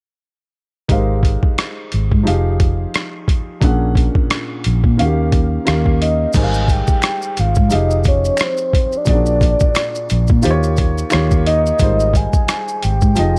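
A pitched-down, gritty boom bap drum kit sits up front with a thumpy kick, hi-hat, rim click and crash, its compressed, tape-warm sampler sound setting a sensual, smooth neo-soul groove at 88 BPM in 4/4 with a 16th-note swing in Ab major. Beside it, a foam-muted, round fingered electric bass, amped and dark, anchors the low end, while a mellow, woody upright piano comps lush chords such as Abmaj13, Fm9 and Eb9 further back in the mix. At 6.0 seconds a soft octave-layered synth lead enters with the melody, a full, rounded blend of triangle, sawtooth and sine with a sub octave, fast attack and sustained notes, colored by chorus, tremolo and vibrato. From 6.3 seconds, close and dry maracas, finger snaps and group handclaps add a faint acoustic layer as the progression turns a Bb7alt into a Bbaug7. The whole excerpt, cut from a longer piece, sits in a small room ambience with a dark, warm production.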